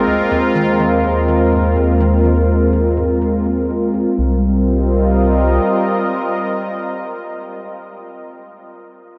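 Ambient, sequencer-driven space music in C minor at 124 BPM, this expansive, cosmic fragment from a longer piece is led by an up-front, airy sawtooth pad holding sustained chords with chorus across the full 8.0 seconds, while a round, deep analog bass sits beneath until 5.6 s. A very quiet, bubbling texture with random filter steps and a very quiet, hollow square-wave pluck riff both fall away around 4.2 to 4.4 s, where a C minor chord opens the second section. A vast, echoing reverb with an 8.0-second tail washes over the whole space.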